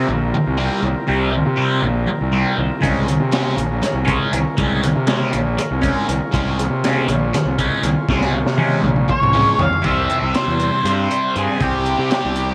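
Light reverb and small-room ambience frame this hypnotic, mysterious psychedelic rock fragment in 7/8 at 240 BPM, which opens on a bright, double-tracked fuzz guitar riff with distortion and phaser, a round, punchy overdriven fingered bass, and a buzzy vintage combo organ holding sustained chords in the background through spring reverb. A gritty, saturated breakbeat kit with dark cymbals, a high-tuned snare and a tight kick joins at 2.8 seconds and later plays a fill, while the chords move from C7sus4 to Db6 and then to C5 once the organ stops at 9.8 seconds. From 9.1 seconds, an up-front, shadowy octave-fuzz lead guitar carries the melody with distortion and slapback echo.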